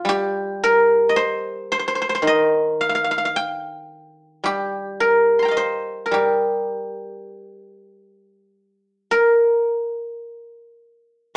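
Rubato and unhurried, hovering around 49-55 BPM in a loose 4/4, this short excerpt of Chinese traditional solo plucked-string music unfolds in G jue mode with an elegant, longing mood. A lone guzheng, played with fingerpicks and placed up front, carries everything from Eb3 to C6 with a ringing, silvery tone and acoustic warmth, shifting to a new section at 9.1 seconds. Light reverb and a small-speaker quality give it the feel of a live performance captured in one room.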